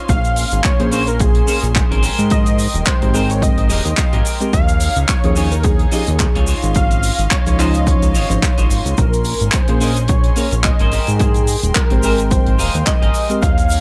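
A fat, detuned sawtooth analog bass drives this groovy, cosmic nu-disco excerpt alongside a punchy, tape-tinged electronic kick and a dry, polished funk kit of handclaps, hi-hat and shaker, with a very quiet egg shaker beneath; a bold unison lead with vibrato carries the melody, a clean picked electric guitar with subtle chorus and gritty sampler texture plays a riff with fills at 3.4 and 12.3 seconds, a tremolo-laden tine electric piano enters at 0.8 seconds, and floating bowed strings hold soft-edged chords in the background, the strings and piano pumping under sidechain, all over swung sixteenths and lush Bbm9 to Abmaj9 harmony in an echo-heavy studio reverb where the lead, guitar and piano trail dub echoes.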